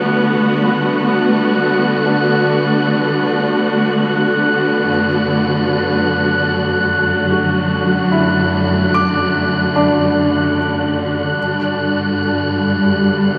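A dark, lush symphonic string section sits up front, holding bowed, vibrato-rich chords that move from Gmaj9 to D/F# at 4.9 seconds and a rootless Em9/G at 11.4 seconds in this serene ambient passage in G major at 74 BPM, cut from a longer piece. Behind it, a soft felt-muted upright piano fades in across the whole 13.4 seconds with mellow, intimate arpeggios veiled in a diffuse ambient delay. An airy, breathy wind-like tuned noise layer hovers high above, and the whole blend is bathed in a wet concert-hall reverb.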